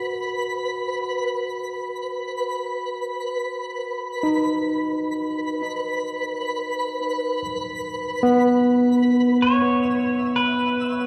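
This serene, spacious ambient excerpt opens with a barky, clean tine electric piano, heard through a combo amp and up front, playing arpeggios in the range from B3 to F#4 through a delay. Alongside it, a twinkling granular texture sits higher, from B4 to E6, built from sparkling FM tones with an octave-up shimmer, slow attacks and long, sustained releases, lightly thickened by its own reverb and a subtle chorus. The piece drifts in free time, tuned to A4 = 438 Hz, resting on a B chord for the first stretch. At 9.4 seconds the harmony moves to a rootless F#7(no3), and an electric pedal steel guitar enters with a short melody between B4 and C#5. The pedal steel is bright, clean and compressed, played with fingerpicks and slide, with volume swells and its own delay. A wet plate reverb with a 3.3-second decay soaks the mix in a dreamy haze until the cut at 11.1 seconds.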